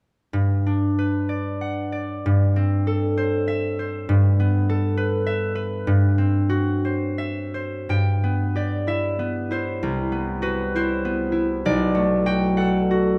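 Graceful and peaceful, this short cut from a longer classical piece is a solo concert harp in G major, moving in a rubato 6/8 at 53-69 BPM in dotted quarters and tuned to A4 = 443 Hz. The fingerpicked harp sounds warm, ringing and up front, spanning B1 to G5 in a recital hall with moderate reverb. Its harmonies move through Gmaj7, Am7/G and G69 before shifting at 7.9 s toward G6, Cmaj7#11 and Bm7, ending at 13.2 s.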